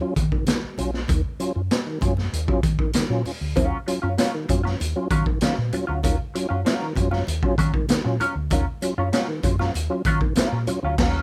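Funk at 97 BPM in 4/4 with a straight feel, this short excerpt cut from a longer piece sits in Eb minor and holds a hypnotic, cool mood over a single Ebm9 chord. A tonewheel organ opens the track with fat, overdriven stabs, its chorus vibrato, audible key click and slow rotary speaker placing it up front. The round, punchy hollow-body bass, fingered and amped with a dark tone, joins at 0.2 seconds alongside a gritty, saturated garage drum kit of kick, snare, hi-hat and crash, its boomy kick and rolled-off top sounding close in a small room, while very quiet, bright, low-tuned congas sit far beneath. After the opening break, a mellow electric guitar enters at 3.6 seconds, clean and compressed but soaked in wah and lush chorus, playing accompaniment close to the listener. The rough home demo mix carries little reverb, and the band lands a shared accent at 11.0 seconds just before the cut.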